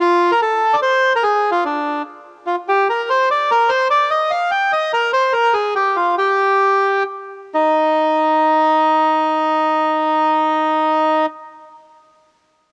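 A reedy, dark, mid-forward bandoneon plays solo up front in this whirling, charming musette in 3/4 and Eb major at 120-147 BPM, slowing between 4.9 and 7.5 seconds before moving into a new section, all heard through a home cassette recording bathed in moderate spring reverb, in a brief fragment cut from a longer piece.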